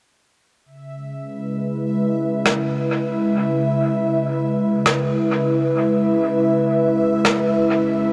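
This ambient dub fragment, cut from a longer piece, floats in free time with a spacious, hazy mood. From 0.9 s, a warbling, tape-like pad holds sustained chords, its detuned sawtooth and triangle tones fading in slowly and lingering on long releases. Chorus, built-in reverb and phaser give this up-front pad a nostalgic, lo-fi, mellow character. Alongside it, a bubbling texture on a single high E5 moves through random resonant filter steps, its bright, detuned sawtooth tone also shaped by chorus and built-in reverb. A dark, smooth acoustic rim click played with brushes sits up front from 2.5 s to 7.4 s, its rolled-off top trailing into dub echo. A huge ambient reverb with a long, slow decay surrounds the whole mix.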